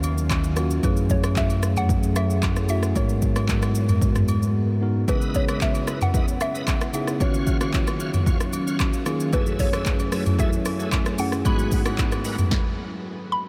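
Late-night and deep, this amapiano excerpt at 113 BPM sets a woody, mellow mallet-like synth pluck melody with phaser and diffuse delay over a clean tine electric piano, a moody sawtooth pad pumping in the background, a round, dark fingered bass that plays until 5.0 seconds, a punchy, up-front deep house drum kit with smooth hats, dry agogo bells and woodblock, and a shouting, lightly overdriven tonewheel organ whose stabs enter at 5.1 seconds, all drifting through a dreamy, reverb-soaked mix of minor-ninth chords before a stop at 12.5 seconds.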